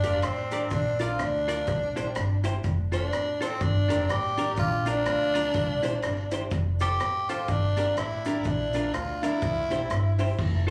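A raspy, gritty tenor saxophone leads from the first second of this joyful, upbeat ska excerpt at 124 BPM with swung eighths, sitting up front with scooped notes and vibrato over a cycling Gm, Bb, C, F progression. A twangy, compressed electric guitar with tremolo and slapback echo, a woody, slightly detuned upright piano placing stabs in the background, a dark pizzicato upright bass, and a small-room drum kit with a boomy kick and rim clicks carry the accompaniment, while a faint, grainy cabasa adds texture. It sounds like a live gig heard through the venue's PA, with club reverb and plate reverb on several parts, and the sax drops out at 10.2 seconds as the band plays on to 10.7 seconds.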